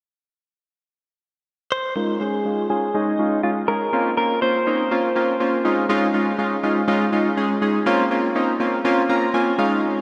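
Pop at 122 BPM in Db major, summery and euphoric, soaked in a huge ambient reverb that gives this short cut a dreamy glow. A clean, direct-recorded electric guitar enters at 1.7 seconds with a compressed, picked melody, softened by a low-pass filter and trailed by diffuse delay. At 2.0 seconds, round, airy analog keys built from detuned pulse and sawtooth waves, with a noise layer, filter sweep and chorus, come in up front over Dbadd9 and Bbmadd9 chords, and a synth keys fill arrives at 8.8 seconds.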